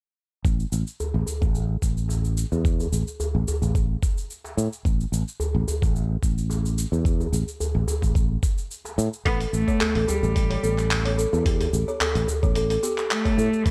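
A growly fretless electric bass sits up front from 0.4 seconds, its sustained low notes pumping with sidechain compression while a filter sweep shapes its tone through the opening stretch. This is peaceful, organic downtempo with a lightly swung feel, built on a thumpy, gritty electronic kick and a dusty sampler-style soul kit of handclaps, hi-hat and shaker, both compressed and re-recorded in a large room. A djembe, struck with soft hands, adds tight, cracking accents from a distance. At 9.3 seconds the harmony moves from an A5 to an A7 chord as a bowed cello enters with smooth, even vibrato, joined by buzzing kalimba arpeggios with a woody, hollow-box pluck, both carried on tape echo. Light reverb rounds out the sound of this fragment, which is cut from a longer piece.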